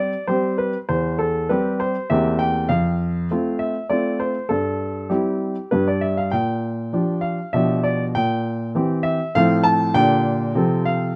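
A graceful, elegant classical-period piano sonatina in 3/4 at 99 BPM, this short passage cut from a longer piece features a clear, polished baby grand piano up front, playing alone from E2 to A5 in C major before shifting to F major at 6.3 s, tuned to A4 = 435 Hz and set in light reverb with a dark, warm production.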